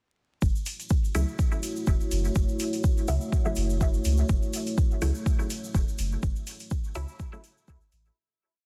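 Deep and hazy, this short dub techno piece sets a tape-warm four-on-the-floor kick and metallic open hi-hats under a round, soft sub bass, sparse muted chord stabs moved in parallel through phaser and dub echo, a dark, full-bodied analog pad with chorus that enters at 1.3 seconds, and a grainy, distant egg shaker in hand-played sixteenths, with sidechain pumping on the bass, stabs and pad, vinyl crackle over a dense, heavily limited master, and a fade-out from 5.6 seconds.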